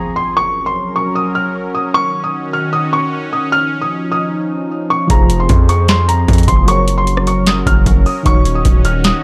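Eerie and brooding, this dark trap excerpt at 152 BPM in a half-time feel opens with a muted, intimate felt piano melody sitting high over a detuned, resonant sawtooth pad that holds sustained chords moving from Gb through Ebm7 and Dbadd9. At 5.1 seconds the rest of the track drops in: round, tremolo-tinged electric-piano-like synth keys, a heavy, saturated 808-style bass with a noise layer, and a booming analog drum machine up front with a deep kick, crisp snare, handclaps, rim clicks and metallic hi-hats. The mix stays dry and close, with a short room on the snare, claps and hats, the piano's delay, and the chorus on the pad and keys adding a touch of space.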